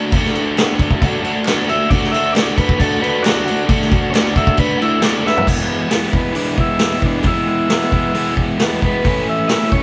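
A straight 4/4 beat at 135 BPM drives this swaggering, rowdy garage rock cut, taken from a longer piece in E mixolydian. The vintage drum kit sits up front with a punchy kick, a medium-tuned snare, dark cymbals and a rolled-off top, working through hi-hat, crash and toms. Beside it, a crunchy, overdriven electric guitar plays a picked, double-tracked riff. A very quiet, crisp group handclap sounds distant, as if from a large room. From 1.7 s a buzzy, clean combo organ carries the melody, and a drum fill at 5.2 s leads into a new section as the harmony moves from D to E and later to A. The band plays live together in one stone room with moderate reverb, giving the whole thing a loose, raucous energy.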